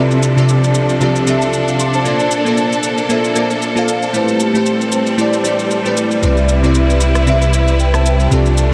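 Amapiano at 115 BPM with a light 16th-note swing, this deep, soulful fragment of a longer piece sets glassy, detuned digital keys with chorus against a rich, bowed studio string section whose expressive vibrato sustains the chords from the start. An electronic shaker and rim click enter at 0.1 seconds beneath the harmony, which moves from F69/C through Bbmaj7 and Am9 to Cmaj7. A punchy sub bass with a pitch-drop attack arrives at 6.2 seconds, and the whole mix sits in a dreamy, reverb-soaked space with a 5.0-second tail.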